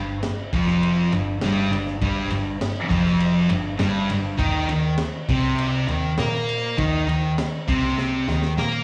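A straight 4/4 pulse at 101 BPM drives this menacing, raw garage rock excerpt, with a crunchy breakbeat kit of tight kick, high-tuned snare and dark ride cymbal sounding gritty and saturated with a rolled-off top, closing on a drum fill from 8.0 to 8.8 seconds. Up front, a thick, double-tracked fuzz guitar picks out the riff over Fsus2 and Eb5 chords, its distortion trailed by slapback echo, while a vintage foam-muted picked bass sits round and dark beneath it. The whole thing sounds like a live gig heard through a club PA, wrapped in small-room ambience and club reverb.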